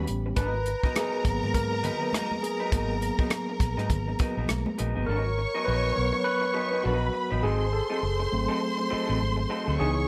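Smooth and cinematic, this excerpt of lush 1970s-style soul swings gently in 4/4 as a barky, overdriven tine electric piano with fast tremolo takes the solo spotlight over a G#m9 chord that shifts to G#7b9 at 7.4 seconds. A round, foam-muted vintage electric bass sits up front with a dry cocktail drum kit featuring a punchy kick, hi-hat and rim click, while very quiet, high-tuned congas add soft-handed color until the drums and congas drop away near 4.9 seconds. A slightly broken-up, lo-fi electric guitar riff through a small old amp and a distant, expressive bowed string section with vibrato fill out the sound in a small room with light reverb.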